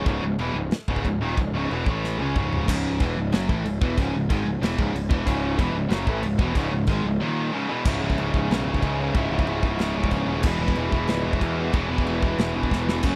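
A growly, fuzz-laden picked bass sits up front with a punchy, equally forward drum kit that crashes through china and crash cymbals with fills at 2.0 and 12.7 seconds, driving an epic, heavy metal excerpt in which two bright, tight distorted guitars riff, one dropping out between 2.7 and 5.3 seconds just as a double-tracked, compressed overdriven guitar joins in the background, all captured in a dry, close 1970s-style studio sound.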